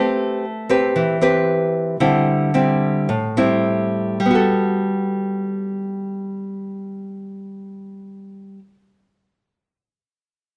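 A fingerpicked nylon-string guitar plays alone from 0.0 to 8.7 seconds in this romantic, sophisticated bossa nova fragment in G major, its small, up-front acoustic tone set in a moderate large-studio reverb as the straight 4/4 pulse, between 101 and 118 BPM, slows over the first 4.2 seconds through Am9 and D9sus4 before arriving on Gmaj9.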